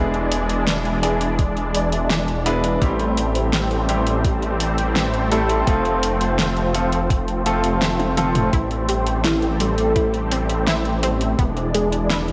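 Set in a moderate concert-hall reverb, this nocturnal, cinematic synthwave excerpt at 84 BPM in A minor opens on a silky, nasal analog string pad with ensemble chorus and sidechain pumping, brilliant baby grand piano stabs trailed by tape echo, a thick, saturated detuned saw bass sitting up front, and a produced pop kit with a fat snare, metallic hats and toms. A thumpy, sampler-style electronic kick enters at 1.4 seconds, and a drum fill marks the point where the piano drops out at 8.5 seconds, as the chords move through E7, Am7 and F. A round analog pluck adds chorused, echoing arpeggios in the background, and a dark, velvety synth lead with tremolo and tape echo takes up the melody from 8.9 seconds.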